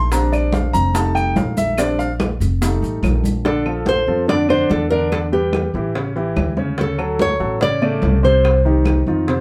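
Afro-Cuban jazz with a danceable, sophisticated feel. It opens on a baby grand piano solo over thumpy, pizzicato upright bass, both up front, while soft-handed congas, tight high-tuned bongos and woody claves sit in the background and grainy, mellow maracas round out the percussion bed. At 3.5 seconds the maracas drop out and a full-bodied, fingerpicked nylon-string guitar takes the melody, the band sounding live in one room with moderate studio reverb and the hand drums carrying a vintage, band-limited tone in this cut from a longer piece.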